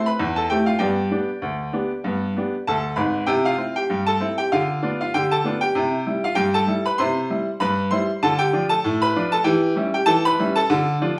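A bright, up-front baby grand piano fills a studio with a moderate reverb of about 0.8 seconds, giving this short cut from a longer piece an open presence. It's lively, playful ragtime in C major at 97 BPM in 2/4, with a swung sixteenth-note feel. The piano plays alone throughout, ranging from a deep Ab1 up to C6 with a brilliant edge. The opening passage leans on A minor and G before a new section begins at 3.3 seconds, settling onto C. From there the harmony moves through diminished passing chords, Bdim/D and later C#dim/E, that add a sly, chromatic lift. It comes to rest on D minor near the close, at about 10.7 seconds.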